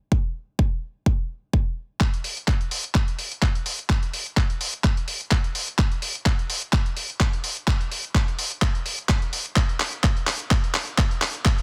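A dry, dense and heavily limited mix opens this groovy, nostalgic house cut at 127 BPM in 4/4, with a 55% swing on the sixteenths. A punchy, layered electronic kick sits up front from 0.1 seconds, carrying a tape-warm character from being re-recorded in a small room. At 2.0 seconds a gritty, compressed sampler-style soul drum kit joins with handclaps and hi-hat, its snare softly clipped and its hats sidechain-pumping, as a build-up and drum fill run until the fragment breaks off at 11.6 seconds.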